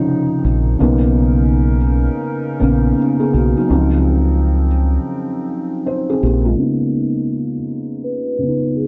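Mellow and nostalgic, this lo-fi hip hop fragment in B major moves at 83 BPM with a swung 16th feel. The felt-muted upright piano plays a boxy, intimate accompaniment throughout with audible action noise, while a round, punchy fingered electric bass enters at 0.4 s and a warbling, detuned tape-like pad with chorus and reverb holds sustained chords until 6.5 s. The vibraphone, ringing softly with slow motor vibrato and tape echo, sounds a note at the start and returns for the melody at 8.0 s. All of it sits in a small room with a cassette haze.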